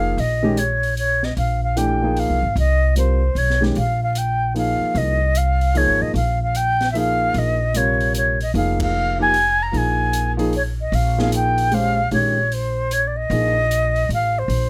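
This modal jazz fragment in Bb dorian has a searching, cool mood, swinging in 3/4 at 151 BPM. A concert flute carries the melody up front, with a pure, softly attacked tone and expressive vibrato. A grand piano accompanies with a natural, warm sound, moving through Bbm7, Fm and Bb7sus2 before settling on Fm/Bb, and drops out at 13.5 seconds. The pizzicato upright bass sits close and woody, its steel strings anchoring the low end. An acoustic jazz kit sits further back in a studio room, with dark cymbals, a high-tuned snare and a boomy kick, and the whole band hits an accent together at 8.7 seconds under light reverb.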